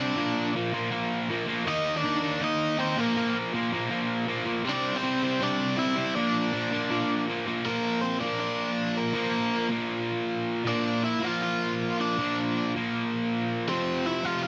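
A distorted electric guitar drives this rebellious, energetic punk excerpt with a bright, double-tracked, compressed riff that sits up front, while an overdriven electric guitar carries the melody, its picked lines trailed by delay. Both guitars play throughout, with chords moving through Bb, Eb5, Bb5 and C in the opening section before the feel drops into half time at 7.7 seconds. The pair is set in a moderate studio reverb, and the clip breaks off mid-performance from a longer piece.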